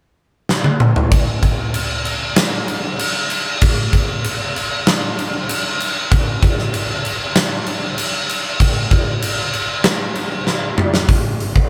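A drum fill opens this swaggering, powerful rock fragment at 0.5 seconds, launching a huge arena kit of crash cymbal, hi-hat, punchy kick, medium-tuned snare and toms in a straight 4/4 at 96 BPM. The acoustic drums sit up front with bright cymbals and a pumping hall ambience, captured as a band playing live in one room with light reverb. A second fill arrives at 10.5 seconds before the kit stops at 11.7 seconds.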